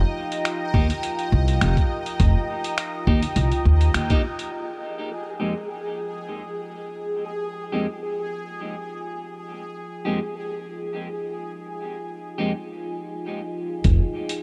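Ambient dub in F minor at 103 BPM with a slight 16th-note swing, this spacious, hazy excerpt opens on a deep, warbling pad of detuned sawtooths over a sub octave and a bubbling, resonant texture of random filter steps, joined by muffled pitched-down snaps and hi-hat from a lo-fi sampler-style kit, a thumpy electronic kick, dark echoing guitar stabs and a woody, up-front pizzicato upright bass, before the drums and bass fall away by 4.5 seconds while a filter sweeps across the pad over an Fm11 chord, and the rhythm returns briefly at 13.8 seconds on Fm9.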